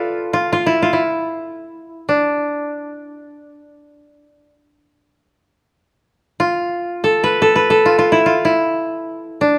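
Solitary and meditative, this short fragment of Japanese chamber music is cut from a longer piece. A lone koto carries it from 0.0 to 9.6 seconds, its melody moving between D4 and B5. Played with fingerpicks, the instrument has a warm, woody tone and sits up front in the mix. A moderate recital hall reverb surrounds it with a sense of quiet space. The whole passage unfolds in free time as one contemplative section.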